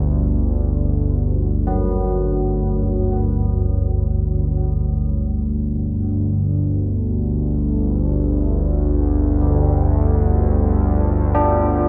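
A warbling, detuned analog drone built from sawtooth and pulse waves sits up front from the start, its slow attack and long release giving a sustained, evolving bed of sound thickened by chorus in this cavernous, desolate dark ambient piece in free time. From 1.7 seconds, carillon bells enter with airy, bronze arpeggios whose ringing minor-third overtone and iron clapper strike trail off into a diffuse ambient delay, set behind the drone. A huge reverb with a long decay and a dark, warm production make the short fragment feel like a vast, empty space.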